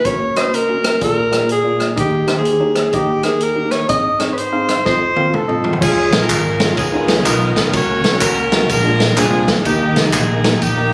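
A swinging 4/4 groove at 125 BPM drives this hopeful, reverent uptempo gospel excerpt in Db major, where a clear, soft-attack alto saxophone with tape echo carries the melody over a roomy big-band drum kit and a worn, lightly overdriven tine electric piano until a drum fill at 4.9 seconds hands the tune at 5.8 seconds to an edgy saxophone section with vibrato, joined by a very quiet shouting tonewheel organ with fast rotary, a dark, round fingered electric bass, and distant tambourine, egg shaker and group handclaps, all heard as if captured on a phone in a room with club reverb.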